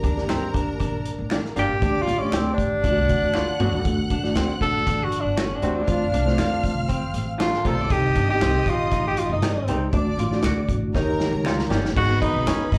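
A straight, driving 4/4 groove at 118 BPM powers this passionate, uptempo 1960s-style soul passage, which sounds like a live club gig heard through the venue's PA. A vintage drum kit with a punchy kick and dark cymbals, with fills at 3.3 and 10.9 seconds, plays alongside a woody pizzicato upright bass, a very quiet finger snap, a hollow-body archtop guitar riff, and a worn, reedy electric piano with fast tremolo. From 1.6 seconds, a clear tenor saxophone takes the up-front lead over a mellow background saxophone section and a lush, bowed string section, with slapback echo on the horns, strings and guitar as the chords move from Gm through Dsus4, F, Cm and Eb7.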